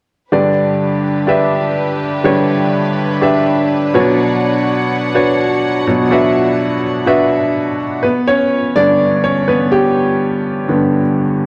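A straight 4/4 pulse at 124 BPM carries this bittersweet, earnest pop excerpt, cut from a longer piece. A bright upright piano plays accompaniment throughout, sitting up front with a woody, intimate tone, long sustain and audible action noise. From the start, a studio string section holds soft-attack, sul tasto chords in a pure, floating blend, well beneath the piano. The harmony moves from G to Bmadd9 at 3.9 seconds. At 8.0 seconds the strings stop and the piano carries on alone over a return to G. A large, wet studio reverb surrounds the recording, and worn cassette tape lends it a warbling pitch drift.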